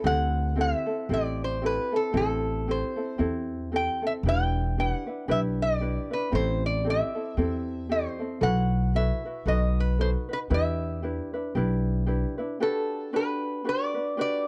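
A swung 4/4 lilt carries this relaxed, sunny Hawaiian excerpt, where a metallic, nasal lap resonator guitar plays the slide melody with fingerpicks over light, thumb-plucked ukulele chords and a woody, dark pizzicato upright bass on steel strings, all three up front in a dry, close 1970s-style small-room sound, with the bass stopping at 12.2 seconds just before the harmony moves from Em7 to Gmaj7 at 12.6 seconds.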